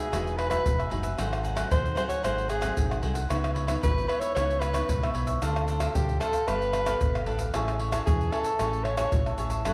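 A straight, playful samba-and-choro groove in 4/4 rides on a tight surdo, egg shaker, pandeiro and tamborim, struck with hard hands and sitting up front in a live room. Beneath it, a deep, dark fingered electric bass holds a round low end, while a crisp, picked cavaquinho and a warm, fingerpicked classical nylon-string guitar fill out the harmony. The breathy soprano saxophone leads with a mellow, jazz-style solo line, colored by light vibrato, scooped notes and a smooth top, and it lets go at 9.4 seconds, just before the rest of the band. The joyful harmony moves from Emaj9 through G#7b9 and C#m9, then turns to Dm7, G9 and Amaj7. A moderate echo-chamber reverb and a small-room ambience give this brief excerpt from a longer piece an intimate, lively sound.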